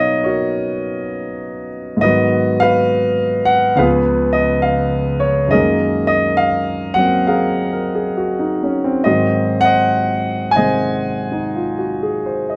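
Solo jazz piano at a relaxed 67 BPM in 4/4, with a swung eighth-note feel and a rubato sense of time, giving this brief fragment of a longer piece a cool, swinging mood. A warm concert grand carries everything alone across its 12.6 seconds, ranging from Db2 up to Ab5, with a deep bass and long sustain that let the chords ring. The piano sits up front in a light reverb. The harmony moves from Cbmaj9 through Abm7 and Db7, settles on Gb69 at 5.5 seconds, then turns to Ab7 at 9.1 seconds. The tuning sits slightly high, at A4 = 441 Hz.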